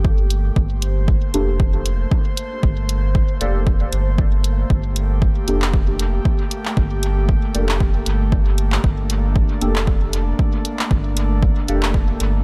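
An overdriven electronic kick drum sits up front in this short, meditative dub techno excerpt, layered and punchy, running from the start to 12.1 seconds. Beneath it a soft, round sub bass holds the low end, its fast attack and sustained tone pumping to the sidechain. An analog drum machine enters at 0.3 seconds with handclaps and hi-hat, its tape-warm sound re-recorded in a small room and trailing dub echo over a lightly swung sixteenth-note feel. From 1.3 seconds a deep, mellow chord stab appears, dark and detuned with a wave-folded edge, colored by chorus, phaser and dub echo and also pumping to the sidechain. An airy, breathy pad with a noise layer and slow attack sustains a single minor chord throughout, chorused and pumping, while digital ambience wraps the echo-heavy mix in a hazy wash.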